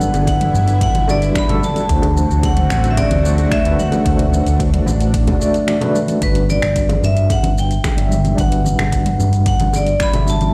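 A relaxed, sunny sunset chillout groove moves at 111 BPM in a straight 4/4, with a punchy, overdriven electronic kick entering at 0.3 seconds beneath a deep house kit of finger snaps, metallic hi-hats, shaker and toms, while soft-handed bongos and congas sit vintage and band-limited in the background. In G major, an overdriven fingered electric bass carries the low end with a dark, round, amped tone, the loudest part of the mix. A worn, slightly out-of-tune tine electric piano plays the accompaniment through a combo amp with medium tremolo and delay, and a bright vibraphone struck with hard mallets, motor off, rings out the melody with digital delay. A lush, thick unison pad of detuned sawtooth and square waves holds slow-attack chords with chorus and phaser until 6.2 seconds, where the Gmaj7 and D7 harmony returns to Gmaj7 and the opening section repeats. The whole fragment, cut from a longer piece, sounds as if played on a big sound system in a bare room, with light reverb, a digital ambience and a large studio reverb.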